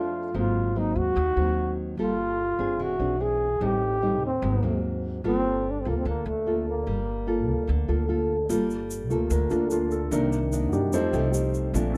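A wistful, melancholic bossa nova in G minor at 147 BPM opens with a breathy, whispered trombone carrying the melody, with soft attacks, light vibrato and scooped notes, over thumb-plucked nylon-string guitar and a woody, growly pizzicato upright bass, all up front as chords such as Ab9, Gm9 and Am7b5 drift by. The trombone drops out at 8.1 seconds, a grainy, bright tube shaker enters at 8.5 seconds, and a concert grand piano with audible action noise, deep bass and long sustain takes an intimate solo from 9.1 seconds over Cm9 and F9. The sound is a rough home demo in a small room with moderate reverb and lossy compression artefacts, cut from a longer piece.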